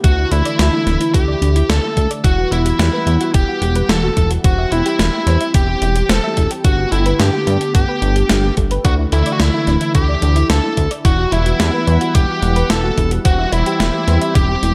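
Cinematic and nostalgic, this synthwave excerpt in E minor moves at 109 BPM with a dark, distorted bluesy lead guitar carrying the melody up front over a silky analog string pad and a soft, round pluck playing arpeggios in the background, all anchored by a glossy chorused synth bass, a thumpy overdriven electronic kick, and a clean 12-bit drum machine whose snare and hi-hat sit in gated reverb, as the chords cycle from Dsus2 through Emadd9, C/E and Gadd9.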